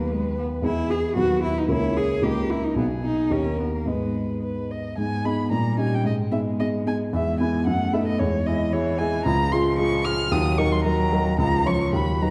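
From the first beat, a stormy, urgent classical-period piano trio movement in quick 2/4 at 112 BPM brings together a woody, vibrato-laden solo violin carrying the melody, a rich, close cello singing an expressive second line with vibrato and portamento, and a natural, up-front baby grand piano in accompaniment, all bathed in a recital-hall reverb as the music moves from G# minor into Bb minor at 9.3 seconds in this fragment of a longer work.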